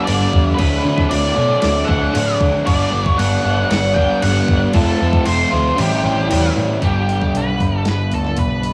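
Shoegaze-tinged dream pop rock in G major, this short excerpt moves at 116 BPM in a straight 4/4 with a wistful, blissful glow. A bright, double-tracked crunchy guitar sits up front playing the riff, its overdrive touched with subtle chorus and a cassette tape tint, while an octave-fuzz lead guitar carries the melody between G4 and G5 through distortion and tape echo. Beneath them, a dark, foam-muted electric bass gives round, punchy low notes with tube saturation, and a crisp 8-bit drum machine supplies a thumpy kick, medium-tuned snare, hi-hat and crash with an overdriven edge. The chords pass through G, D6, Gmaj7, F and A7 before returning to G as a new section begins at 6.8 seconds, just after the kick and snare drop out from 5.8 seconds. Light reverb and small-room ambience give the whole piece the intimate haze of a home cassette recording.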